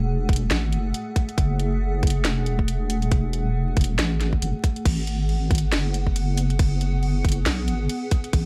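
Vinyl crackle sits over a dry, close mix in this short cut from a longer deep dubstep piece, meditative and cavernous in mood. At 138 BPM in 4/4 with a half-time feel and a swung sixteenth-note pulse, it moves from F#madd9 to G#m7 at 4.9 seconds. A deep, soft wobble bass anchors the low end, dark and saturated, with a detuned, chorused sine-and-triangle tone placed up front. Above it, a granular cloud pad holds sustained chords that feel blurred and evolving, mellow and full-bodied, with a moving notch and its own built-in reverb, set quieter in the mix. From 0.3 seconds an overdriven electronic kick lands tight and forward, joined by a garage drum kit whose cracking snare, hi-hat and crash cymbal carry overdrive and a small-room ambience, lower in level than the kick.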